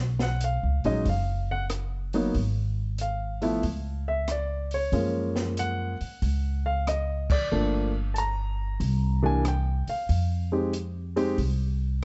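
A playful jazz piano trio at 93 BPM in 4/4 with a swung eighth-note feel, cut from a longer piece. A woody, thumpy pizzicato upright bass sits up front from the start, joined at 0.2 s by an intimate grand piano carrying the melody with audible action noise, and by an open acoustic drum kit with dark cymbals, a boomy kick, rim clicks, hi-hat, snare and crash. The band hits an accent together at 7.2 s as the harmony moves from Gbmaj7 through Gm9 and C7 to Fm, in a dark, warm, dry production.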